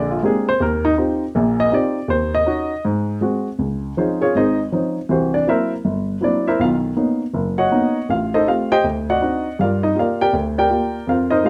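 Swinging and sophisticated, this brief jazz excerpt cut from a longer piece features a solo baby grand piano at a brisk 161 BPM in 4/4 with a swing feel on the eighths, its intimate, up-front tone carrying audible action noise and short sustain through rich extended chords from Bb13 to Gm7 in a moderate studio reverb, with the harmony shifting into a new section at 3.6 seconds.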